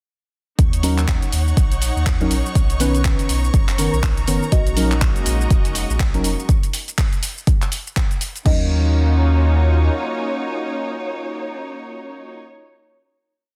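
Late-night and hypnotic, this short deep house piece at 122 BPM in Eb minor rides a four-on-the-floor electronic kick and an overdriven kit of shaker, hats, claps and crash, all in a 16th-note swing, under a round sine sub bass riff, dark detuned chord stabs with chorus, phaser and delay, clear bowed studio strings, a shimmering string-machine violin note held until 6.5 seconds, and a smooth analog pad, while a buzzing, gritty marimba riff in thirds and sixths enters briefly at 4.5 seconds and returns at 8.5 seconds over the final Ebm7 chord in a dense, heavily limited master.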